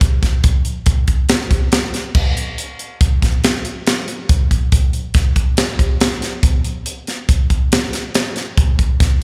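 Captured at a live club gig and heard through the venue's PA, this short cut from a longer rock piece carries a light wash of club reverb around its single part. A crisp fusion drum kit plays from 0.0 to 9.1 seconds, sitting up front in the sound. Its acoustic kit has an airy, polished character, with a high-tuned snare, a punchy kick, hi-hat and crash cymbal all in the mix. The groove moves at 140 BPM in 5/4 with a straight feel. The mood is wistful yet bright.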